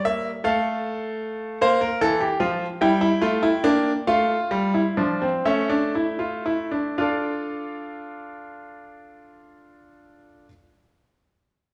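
Contemplative yet driving, this short passage is cut from a longer baroque-style classical fugue in three parts, written in D minor and set in 6/8 at a slow pulse of about 37 to 52 dotted-quarter beats per minute. A single concert grand piano carries all three voices alone for the full 10.5 seconds, ranging from E3 up to G5. Its tone is bright and brilliant, with a deep bass, an intimate, up-front presence, and audible action noise from the instrument's mechanism. The tempo slows from 0.4 to 7.0 seconds as the harmony moves through F over A, B-flat, a diminished chord over G, D minor and A major, before a new section opens on D minor at 7.0 seconds. The piano sits in a wet recital hall reverb blended with a touch of studio ambience, which lends the polished playing a sense of space.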